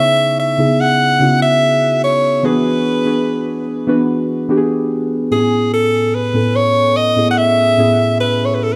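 An alto saxophone and muted, felt-like synth keys begin together at 0.0 seconds in this short R&B fragment, cut from a longer piece and setting a sensual, moody tone at a slow 73 BPM in straight 4/4. The saxophone carries the melody between G#4 and F#5, close-miked and up front, with a warm, pop-style tone, a light vibrato and a touch of digital delay. Beneath it, the synth keys provide soft, dark accompaniment across a broad range from A2 to G#5. Their evolving sound blends triangle and sawtooth tones with a noise layer, a filter sweep and chorus, and each note has a fast attack that then decays. The harmony moves from C#m7 to E7 at 2.4 seconds and settles on Amaj7 at 5.3 seconds, all within a single section that runs to 8.8 seconds. A light, small-room reverb gives the whole performance an intimate, close feel.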